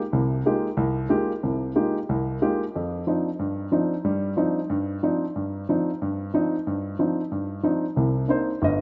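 A warm, intimate baby grand piano plays alone in this brief jazz fragment, its audible action noise and short sustain kept up front in a natural, close sound. At a swinging 184 BPM in 4/4, the spiritual, intense passage moves from Fm11 to Cmadd9/F at 2.7 seconds and reaches Cm9 at 8.0 seconds, spanning G1 to Eb5. A lush hall reverb surrounds the piano, while the rough home-demo mix keeps the top end dull and muffled.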